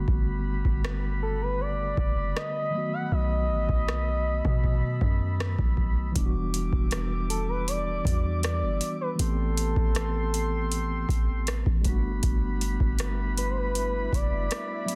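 A booming analog drum machine sits up front in this late-night, sensual slice of contemporary R&B, its deep kick, metallic hi-hats and rim clicks carrying a tape-soaked, small-room character, with soft clipping roughening the snare. Beneath it, an 808-style bass pairs a round sine body with a noise layer, hitting with a fast attack before decaying, and it shares the forefront with the drums. A mellow tine electric piano, clean and heard as if through built-in speakers, plays accompaniment over a Gmaj7, B7, Em7, Am7 progression that returns to Gmaj7. Behind it, a distant, roomy woodwind section holds sustained chords in a classical style with light vibrato. From 1.2 seconds, a smooth gliding lead built from triangle and sine tones carries the melody with portamento, vibrato, chorus and delay, and a background electronic swell arrives at 13.4 seconds in this section cut from a longer piece, all framed by digital ambience and a dense, heavily limited modern master.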